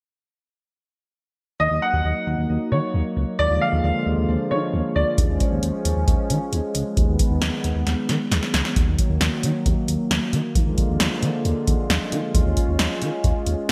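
Cool and driving, this synth-pop excerpt opens with a warbling, detuned analog pad under a filter sweep and a dark, gliding synth bass, while a clear concert grand piano adds a brief delayed second line until 5.0 seconds, then a punchy drum machine with a deep kick and metallic hats enters at 5.2 seconds, bathed in gated reverb, with a fill leading into a new section, all within a bright 1980s-style digital production and lush hall ambience.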